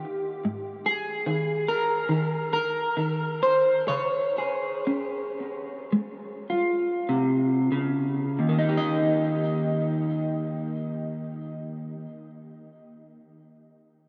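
A slightly broken-up electric guitar, picked through a small old amp and sitting up front, carries this hopeful, gentle folk fragment alone in Eb mixolydian, drifting in rubato 4/4 between 45 and 73 BPM and slowing from 0.4 to 8.4 seconds. Its line spans Eb2 to Eb5 over Ab5 and Dbmaj7 chords before settling on Eb at 8.4 seconds, with analog chorus and delay coloring the tone. The dreamy mix is soaked in a huge ambient reverb with a 7.0-second tail, and the guitar stops at 12.3 seconds.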